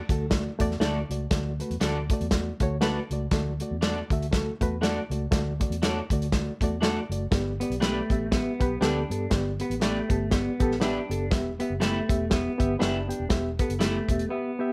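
Uplifting and joyful, this uptempo 1960s-style soul excerpt in D major swings at 120 BPM, built on a barky, reedy electric piano pushed up front with overdrive and fast tremolo, over a dark, round, foam-muted electric bass and a warm, mid-forward soul drum kit with a tight kick. Twangy picked guitar stabs enter at 0.8 seconds, and a compressed, fingered guitar riff through a small old amp joins at 7.6 seconds, before the electric piano takes a short fill in the closing break at 14.3 seconds, with light reverb throughout.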